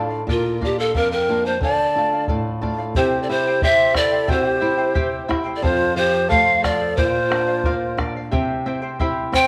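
Earthy and wistful, this Andean folk excerpt moves in a straight 2/4 feel, with a fingerpicked charango, shimmering on its double strings, and a fingerpicked flamenco guitar starting together at the top before a breathy bamboo pan flute takes the melody from 0.3 seconds. The pan flute sits up front with vibrato, tongued notes and a breathy chiff, while a large end-blown quena adds a second line in a straight tone with soft attacks and lifted highs, and a round bombo sets the pulse. Chords pass through Bb, Dm, C and F, and a wet echo-chamber reverb gives the studio ambience a lingering bloom.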